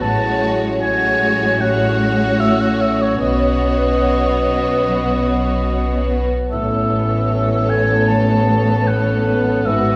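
A solo oboe with light vibrato carries a tender second line above a lush, softly attacked violin melody in this hopeful, rubato cinematic film score, cut from a longer piece. Beneath them sit a smooth second violin line, rich viola and cello sections, and mellow, roomy French horns holding sustained chords, while a bright, ringing concert harp plays very quiet fingerpicked arpeggios and an up-front double bass section anchors the bass. The orchestra is heard from further back in a wet stone room, and the chords move from F#madd9/A to Badd9 at 3.2 seconds and Aadd9 at 6.5 seconds.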